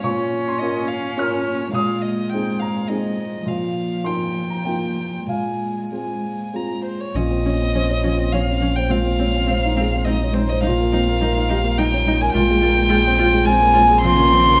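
A close solo violin carries the melody with light vibrato, a soft attack and an airy sul tasto bow in this melancholic, fragile neoclassical fragment, which moves in a rubato 3/4 at roughly 93-109 BPM in Bb dorian. A dark, smooth-topped cello sings a second line beneath it while a woody, natural upright piano with short sustain plays up-front accompaniment over a cycle of Bbmadd9, Abadd9/Bb, Ebadd9/Bb and Fm/Bb. At 7.1 s a deep, full sine sub bass with octave arrives, joined at 7.2 s by an intimate viola in the background, with the whole recording bathed in a wet recital hall reverb.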